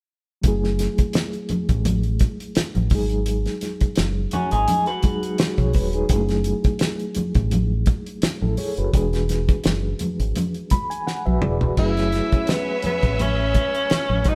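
A damped 1970s drum kit sits up front in this lush, cinematic soul excerpt. Its fat snare, tight kick and rolled-off top give the gently swung groove a dry, dark footing. A deep, round fingered electric bass punches alongside it, and a mellow, reedy electric piano with fast tremolo carries the chords through F#m11, G#m7 and E7, while high-tuned congas ring in the background. At 4.3 seconds an electric guitar through a small old amp drops in a brief twangy, slightly broken-up, lo-fi riff. After fills from the electric piano and drums, a punchy tenor saxophone takes the melody with vibrato at 11.8 seconds, set back in a roomy space, joined by a distant, bowed violin section playing a soft-attacked second line. The band sounds like it is playing live together in one room, with light reverb and a smooth overall feel.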